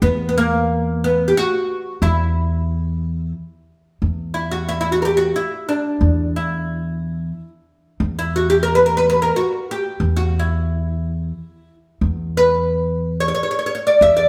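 A bright, plectrum-plucked fretless oud with double strings carries a melancholic, hypnotic melody in E maqam nikriz over a dark, growly pizzicato upright bass holding E2, both up front from the start in this Arabic maqam ensemble piece at 90 BPM in 3/4, played live in one room with moderate large-studio reverb and moving into a new section at 4.0 seconds of this passage cut from a longer performance.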